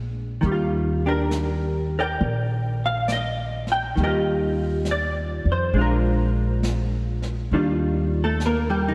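A dark, clean hollow-body electric guitar, picked and compressed with an ensemble chorus, opens this tender jazz ballad in Eb major alongside a woody, thumpy pizzicato upright bass on gut strings, both sitting up front at a slow 68 BPM with a gentle swing. At 0.4 seconds a softly brushed drum kit with a medium-tuned snare and hi-hat slips in low in the mix, its top end rolled off, as the harmony moves from Ebmaj9 to Bb7 and back to Ebmaj9 at 7.5 seconds. A lush hall reverb soaks the whole intimate, dreamy excerpt, cut from a longer piece.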